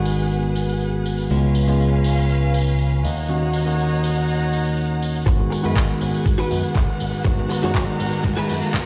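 A barky, bell-like tine electric piano opens this groovy, cosmic nu-disco cut at 121 BPM in G# dorian, roughened by vintage 12-bit sampler grit, sidechain pumping, a low-pass filter and tape echo, over sustained chords from a clear, focused violin section with vibrato, a punchy picked bass through an envelope filter and a close tambourine, moving through G#m7, C#7 and D#m7. At 5.3 seconds a build-up begins as a knocking, tape-tinged electronic kick drum and a pop kit with crisp hi-hats and handclaps arrive, joined by a clean, compressed direct-recorded guitar riff with ensemble chorus and tape echo, while filter sweeps move across the guitar and electric piano. A riser enters in the background at 6.9 seconds, and the whole mix sits in light digital ambience with a stone-room reverb, as if played on a big sound system in a bare room.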